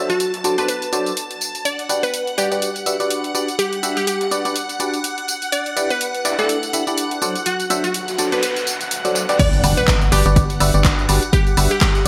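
Bright, 1980s-style digital production with plate reverb frames this joyful, uplifting piano house piece, where a biting, up-front FM electric piano riff with phaser and sidechain pumping and a glassy, detuned wavetable pluck melody with chorus and digital delay ride over shimmering string-machine violin chords, a swung house kit of warm hats, handclaps, tambourine, woodblock and crash under gated reverb, and a very quiet, gritty breakbeat kit of hi-hat and snare, until a background noise sweep from 8.0 s leads to a drop at 9.4 s that brings an impact, a punchy electronic kick and a hollow, organ-like FM bass under a rootless Em7.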